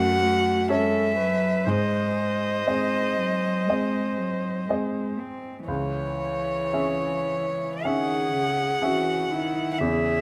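Yearning and elegiac, this brief passage from a slow romantic movement for piano quartet unfolds at an unhurried pace with a flexible, rubato feel. All four players sound together for the full 10.2 seconds. The violin carries the melody up front with a rich, intimate tone, light vibrato, soft attacks and an airy sul tasto bow. Beneath it, the cello adds a second line, played sul tasto with a gentle attack and a touch of vibrato, while the viola's dark, woody voice fills out the accompaniment. The baby grand piano supports the strings with a clear, natural sound and short sustain. Close, detailed microphones and light reverb give the strings a near, personal presence.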